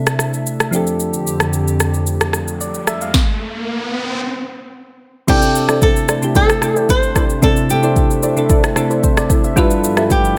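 An amapiano groove in 4/4 with a warm, soulful mood, cut from a longer piece. Soft, round synth keys with an electric-piano character and chorus carry the accompaniment from the start, resting on a hollow, flute-like pad whose slow-attack chords pump gently against the beat. An electronic afro-pop drum kit sits up front, with a deep kick, sharp snare, rim click, shaker and crash cymbal, while an electronic riser builds tension from 2.4 seconds. At 5.3 seconds a fingerpicked acoustic flamenco guitar with delay takes the melody up front, joined in the background by dark, nasal chord stabs with a sub octave, chorus and delay. The harmony moves through C69 and F69 chords and arrives on a G13 at 9.6 seconds, all set in a light reverb.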